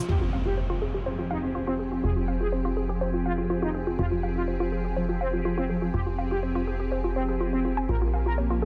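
An analog synth brass melody, an evolving wavetable pad and a woody, wave-folded pluck arpeggio open this cinematic, melancholic melodic techno excerpt together, the brass bold and warbling through chorus and tape echo while the pad, bright and morphing under phaser and ensemble chorus, carries a filter sweep across its sustained chords. A punchy, up-front analog bass with tube saturation and a quiet, low-passed shaker in the background join at 0.1 seconds, alongside an electronic impact that lasts until 2.0 seconds. The dub-echoed pluck stays dark and percussive as the harmony moves from Fmadd9 to Bbm at 7.9 seconds, all set in a light digital ambience and a dense, heavily limited master.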